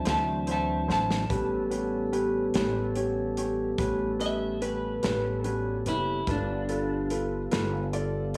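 A bright, twangy electric guitar through a small old amp carries the melody in this gritty, soulful slow blues excerpt. Its picked, slightly broken-up tone is touched by subtle chorus and analog delay, and it drops out at 7.1 seconds. The 12/8 groove moves at 48 BPM on the dotted quarter with a straight feel, tuned a little flat to A4 = 435 Hz, over chords of D9, A9 and G9. A clear, woody upright piano comps beneath, while a clean tonewheel organ holds sustained chords through a slow rotary speaker. A pizzicato upright bass with steel strings sounds growly and thumpy, and an airy, polished country drum kit with a punchy kick and medium-tuned snare adds a fill at 0.9 seconds. Moderate club reverb gives the whole band a soulful, lived-in room.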